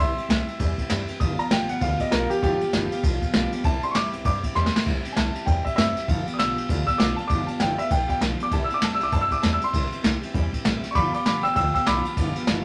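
Rockabilly with an upbeat, retro swing feel, this short cut from a longer piece rides a simple back-and-forth between C and G7. A clear, woody upright piano sits up front and takes a solo throughout, its melody ranging from G4 to E6. A bright, full-bodied steel-string acoustic guitar is picked underneath as accompaniment, while a pizzicato upright bass with gut strings gives a dark, thumpy foundation. The jazz kit is played with brushes and sits up front with an airy, polished sound, pairing dark cymbals and a medium-tuned snare with a boomy kick, and it drops a short fill at 4.6 seconds before the phrase repeats. Moderate studio reverb gives the band a gentle sense of space.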